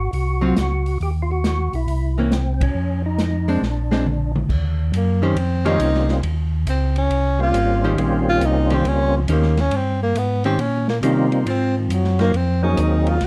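A dark production with light reverb frames this greasy, bluesy soul jazz organ trio, cut from a longer piece and swinging in 4/4 at 138 BPM in Eb mixolydian. A percussive tonewheel organ carries the melody with a fat, lightly overdriven tone, key click and third harmonic percussion, turning through a slow rotary speaker with chorus vibrato. A second, mellow tonewheel organ plays a round, clean bass line up front, also through slow rotary and chorus vibrato. An open acoustic jazz drum kit in a small room adds dark cymbals, a medium-tuned snare and a boomy kick, while a hollow-body archtop guitar, miked and amplified, accompanies with a clean, picked electric sound. The band hits an accent at 2.5 seconds, and a drum fill at 3.6 seconds leads into the second section, where the tenor saxophone enters at 5.0 seconds for its solo. Close-miked and up front, the saxophone is warm, with a soft attack, vibrato and scooped notes in a jazz style, playing over harmony that settles on Eb13 before moving to Ab13 near the end.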